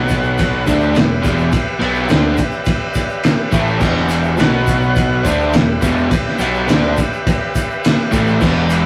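Garage rock with a swaggering, menacing edge, this brief cut from a longer piece pairs a crunchy, double-tracked overdriven guitar riff and a cloth-damped, thuddy drum kit with a fat snare and dark cymbals up front, while a growling, overdriven picked bass, a buzzy combo organ holding heavy-vibrato chords, and a grainy tube shaker in the background fill out a rough, saturated rehearsal-room sound.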